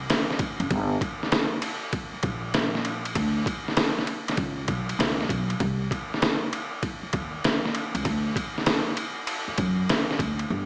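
A gritty, pitched-down trip hop drum kit sits up front, its thumpy kick, medium-tuned snare, hi-hat and ride cymbal sounding compressed and sampler-style, as if re-recorded in a large room. It joins a woody pizzicato upright bass with steel strings that opens this smooth, relaxed jazz-hop cut from a longer piece, moving at 98 BPM in 4/4 with a swung sixteenth-note feel. The whole takes on vinyl crackle, a small-speaker character and a moderate plate reverb.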